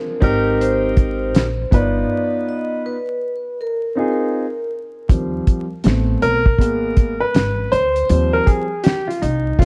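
A swung 80 BPM hip hop groove in 4/4 drives this smooth jazz-hop piece in Eb major, with a cloth-damped drum kit of fat snare, tight kick and hi-hat sitting dry and up front beside a woody, thumpy pizzicato upright bass. A dark, mellow baby grand piano plays long-sustained chords such as Abmaj9 and G7b13, while a metallic, ringing vibraphone with slow motor vibrato and tape echo carries the melody until 4.7 seconds, and a break runs from 2.1 seconds. The piano takes a solo from 5.1 seconds over Eb6, Amadd9 and Abmadd9, and the mix sits in light reverb, studio ambience and vinyl crackle.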